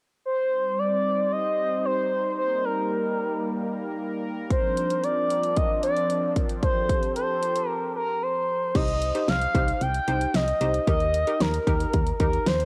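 A smooth, mellow sawtooth lead with vibrato and portamento carries the melody up front in this nocturnal, melancholic synth-pop excerpt at 113 BPM in C dorian, over an evolving, ring-modulated resonant pad on sustained chords; a layered electronic pop kit with a punchy kick and fat snare joins at 4.5 s, and after a break at 7.7 s a detuned, bright analog pluck and a round, dark FM bass enter at 8.8 s, all set in light reverb with the lead, pad, drums and pluck carrying a cassette-tape character on a home cassette recording.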